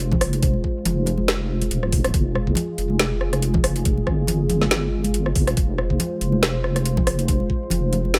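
Brooding and dark, this swung, half-time deep dubstep excerpt rests on a detuned sawtooth analog pad with a sub octave, holding slow-attack chords through chorus; beneath it, a deep soft wobble bass sits up front with a rounded, compressed, chorus-thickened sine tone, while a garage drum kit of woody snare, rim click and metallic, overdriven hi-hats joins a knocking, tape-warm electronic kick drum and thick-skinned acoustic congas tucked dry in the background with dub echo, all in a light reverb.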